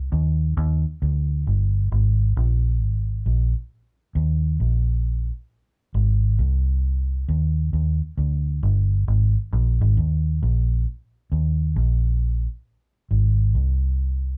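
A moderate studio ambience surrounds this short reggae cut, recorded live in one room, where a vintage electric bass played with the fingers carries the whole 14.4 seconds alone. Its foam-muted tone is dark, round and punchy, sitting up front through an amp as it moves between G1 and Eb2 in Eb major. At 67 BPM in 4/4 with a swung sixteenth-note feel, the mood is uplifting and warm.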